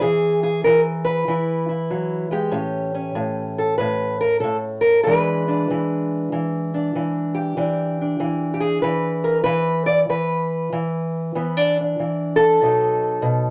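A dark, boxy, fingerpicked old ladder-braced acoustic guitar plays alone and up front from 0.0 to 13.5 seconds, in a laid-back, swaggering acoustic country blues at 96 BPM in 4/4 with a swung eighth-note feel and a moderate studio reverb, moving through E, A7 and E7 in E mixolydian before landing on B7 at 12.6 seconds in this short cut from a longer piece.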